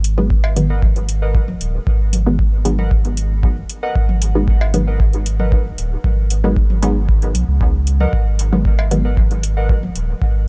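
Hypnotic and cavernous, this dub techno excerpt moves at 115 BPM in a straight 4/4, sitting on a single G#m7 chord in G# minor with tuning set to A4 = 435 Hz. A deep, round sine sub bass sits up front from the start, pumping against the sidechain. The overdriven analog kick and metallic hi-hat, both re-recorded in a small room, carry the groove. Muted, detuned sawtooth chord stabs with a filter pluck and short decay pass through chorus, phaser, sidechain pumping and dub echo. Layered electronic toms and cowbell sit in the background with dub echo and pumping, while warbling, nostalgic lo-fi synth keys in square and sawtooth tones enter at 0.7 s with a filter sweep, chorus and echo. The production is dark and warm with little reverb, and the fragment is cut from a longer piece, ending around 10.5 s.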